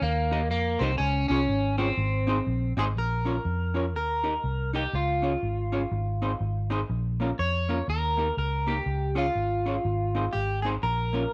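An electric guitar at the edge of break-up, warm and fitted with a phaser, carries the melody from the first moment, its slightly broken-up picked tone sitting up front beside a dark, round, foam-muted fingered electric bass, and a clean, hollow-body jazz guitar joins on accompaniment at 0.3 seconds. This energetic, mischievous ska fragment in Bb dorian moves at 122 BPM in 4/4 with a light swing on the eighths, cycling through Eb, Db, Ab and Bbm. A brief opening passage gives way to a longer second section at 3.0 seconds, all set in a light reverb.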